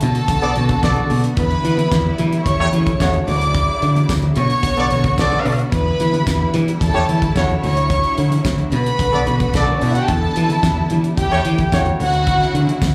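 Heard live through a club PA, this glamorous, driving disco excerpt at 110 BPM in E dorian opens with a dark, up-front string section playing a soft-edged second line over lush sustained chords from a clear string section, a growly, punchy fingered electric bass, a damped 70s drum kit with a fat snare and tight kick, and very quiet low-tuned congas, while a distant horn section enters with stabs at 0.4 seconds, sharing the plate reverb and slapback echo of the dark strings, and a jingly tambourine sits in the background from 0.8 seconds as the harmony cycles through Bm7, Em7, A7/E and Dmaj9.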